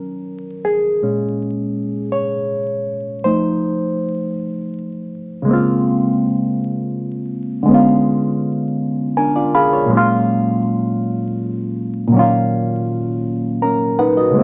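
Sultry and late-night, this short R&B cut from a longer piece sways in a slow 6/8, carried entirely by a solo reed electric piano that sits up front with a barky, reedy bite through its built-in speakers and a shimmering phaser. The piano plays alone through the opening, then moves into a second section at 5.5 seconds over lush extended chords, slipping in brief fills at 8.8 and 13.2 seconds. A small room's moderate reverb and a layer of vinyl crackle give the clean, bright tone a dusky, intimate glow.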